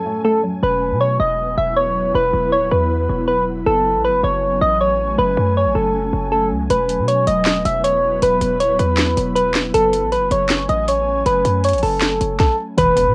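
Trap-inflected hip hop in F# dorian, this eerie, dark excerpt moves at 158 BPM with a half-time feel. Soft, round electric-piano-like synth keys carry the melody up front from the start, coloured by chorus and a cassette-tape haze, while an ethereal, airy pad holds sustained chords beneath, its slow attack and long release blurred by ensemble chorus and built-in reverb. A hollow, bouncy square pluck sounds only briefly at the opening and again at the close, and a punchy, heavy 808-style bass arrives at 0.6 seconds to anchor the harmony as it shifts between F#madd9 and Esus2. The trap drum kit enters at 6.7 seconds, its hard-clipped kick, sharp snare, metallic hats and handclaps sitting up front with a tape-warmed edge. An electronic impact lands in the background at 12.8 seconds, and the whole recording carries light reverb and the character of a home cassette recording.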